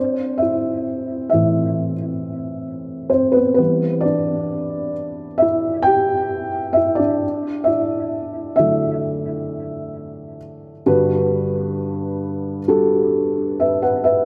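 This emotional, hopeful pop excerpt moves at a slow 66 BPM in a straight 4/4, in G major, carried entirely by a solo felt-muted upright piano whose intimate, boxy tone sits up front across a range from G2 to G5, touched with tape echo. The harmony passes from Am to Em to Dadd9, then settles onto Gmaj7 as a new section begins at 10.9 seconds. A long plate reverb soaks the whole mix, giving it a dreamy atmosphere.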